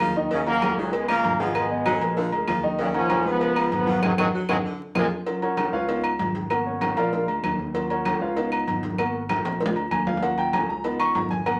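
Fiery and danceable, this salsa excerpt features a bright, up-front trombone section that enters at 0.3 seconds carrying the melody over a breathy, whispered baritone saxophone line that stops at 5.1 seconds, before the warm grand piano takes a solo from 5.3 seconds, propelled by a round, dark fingered electric bass, ringing congas, metal-shell agogo bells and timbales, woody claves and a tight, high cowbell, with a band accent, drum fills, wet studio reverb and vinyl crackle.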